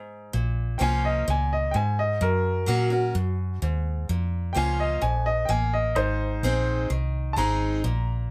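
An upright piano carries the melody in this lonesome, dusty honky-tonk and classic country fragment, entering at 0.8 seconds with a brilliant, woody tone, long sustain and audible action noise that keeps it intimate and up front. Beneath it, a vintage electric bass played with the fingers sits close in the mix, its foam-muted sound dark, round and amped. A picked steel-string parlour acoustic guitar opens the piece alone for a moment before the bass arrives at 0.3 seconds, and it supplies accompaniment with the sparkle of fresh strings and the occasional finger squeak. The straight 4/4 groove moves through a plain progression of Bbm, Gb, Bbm and Ab. Close, detailed miking and little reverb give the trio a dry, present sound, as if this short passage were lifted from a longer performance.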